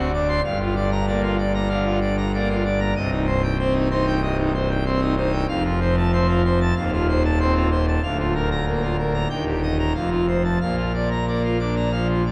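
Full pipe organ, up front with its mixtures and romantic voicing, opens this brilliant, jubilant classical toccata excerpt in Bb major at 95 BPM, spanning C1 to C6 in a majestic solo that moves from Gm7 to a final Bb at 10.6 seconds, set in a dark production with a 3.0-second church reverb.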